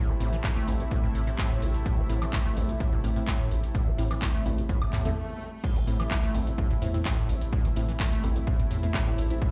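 The recording sounds dry and close, as though pumped through a big sound system in a bare room, with a raw, driving acid house energy in a straight 4/4 pulse. A squelchy, resonant square-wave acid bass runs its riff from the very start, overdriven and bright with a filter sweep and tape echo. Beneath it, a round, deep analog bass adds tube-saturated weight, while a lush, detuned sawtooth pad holds sustained chords that breathe with sidechain pumping and a warbling chorus. A soft, nasal chord stab with a filter pluck sits in the background, colored by chorus and tape echo. An up-front, punchy electronic kick anchors the groove alongside a booming, overdriven analog drum machine whose metallic hats, handclaps, woodblock and crash sound re-recorded in a small room. An electronic swell arrives at 4.9 seconds, leading into a brief stop, and the drop lands at 5.6 seconds, carrying this short cut from a longer piece to its end.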